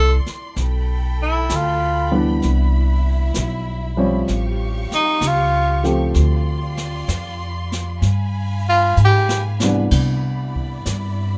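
Late-night and intimate, this swung 64 BPM jazz ballad excerpt in C major sets a soft-attack tenor saxophone with light vibrato soloing until 9.4 seconds over a mellow baby grand piano with audible action noise, a woody pizzicato upright bass up front, lush bowed strings with portamento holding chords low in the mix, and a brushed drum kit with dark cymbals and a boomy kick that enters at 0.3 seconds and plays a fill from 9.0 seconds, all in a dry mix with little reverb.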